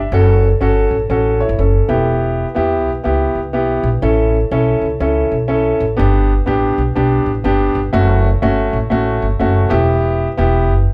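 Uptempo 1960s-style soul with a swung, uplifting glow, this short excerpt sets a smooth, vintage grand piano accompaniment against a woody pizzicato upright bass on steel strings, both up front and played live together in one room under a moderate large-studio reverb, as the chords move from F#m through Em, A and G.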